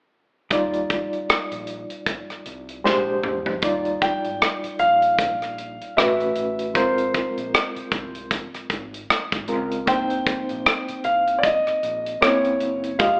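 At a slow 77 BPM in 4/4 with a lazy sixteenth-note swing, this smooth, lush 1970s-style soul excerpt in Eb major opens at 0.5 seconds with drums, electric bass and electric piano together. The acoustic kit sits up front with a tight kick, a medium-tuned snare, hi-hat, rim clicks and toms, and it plays a fill from 2.8 to 3.6 seconds before the band moves into its second passage. A reedy, barky electric piano carries the accompaniment through its built-in speakers, lightly overdriven and pulsing with a fast tremolo, while an amped, overdriven fingered bass stays low in the background. At 4.0 seconds a concert grand piano enters with the melody, intimate and vintage in tone with audible action noise, sitting up front over harmonies that move from Ebmaj9 through A69, Ab69 and Cm7 to a tense C7b9. The whole band sounds as if playing live in one large room with moderate reverb, filtered through a nostalgic AM radio character.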